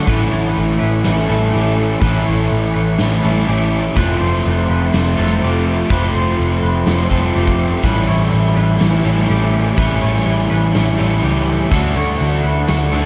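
A straight 4/4 pulse at 124 BPM drives this wistful, blissful shoegaze and dream pop excerpt in A mixolydian, with a huge arena drum kit of punchy kick, medium-tuned snare and hi-hat sounding natural in a big room, under a dark, round, foam-muted picked bass. Two overdriven guitars carry the riff, one compressed and up front with ensemble chorus, the other a hollow-body semi-hollow guitar treated with reverse reverb, while a bright, twangy, scooped clean guitar plays fingered arpeggios in the background through lush chorus and diffuse ambient delay. The chords move from A to F, then A7 at 7.8 seconds and Dmaj7, all in a dreamy mix soaked in a huge 7.5-second ambient reverb.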